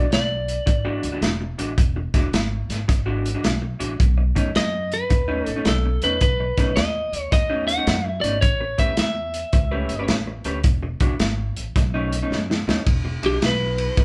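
Electric blues shuffle with a soulful, swaggering swing, where a crunchy, gritty breakbeat kit with dark cymbals sits up front beside a picked, slightly broken-up lead guitar that plays briefly at the start, returns at 4.6 seconds and takes a solo at 12.9 seconds after a drum fill, while a lo-fi rhythm guitar through a small old amp holds down the riff over woody pizzicato upright bass in a lightly reverberant room, all cut from a longer piece.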